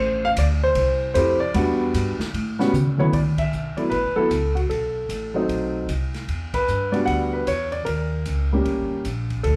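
A moderate large-studio reverb surrounds this short cut from a longer piece, which captures a jazz piano trio playing live together in one room. The mood is sophisticated and warm, swinging in 4/4 at 152 BPM in D major. A natural-sounding baby grand piano sits up front carrying the melody, beside a woody, pizzicato upright bass with steel strings, and both play from the very start. The open acoustic drum kit enters at 0.4 seconds with a dark, rolled-off character, smooth dark cymbals, a medium-tuned snare and a boomy kick, working across hi-hat, ride, snare and toms. A drum fill at 2.7 seconds leads into a new section, where the band hits an accent at 3.3 seconds and again later. The harmony moves through rich colors such as D6, B7b9, Em9 and Eb7.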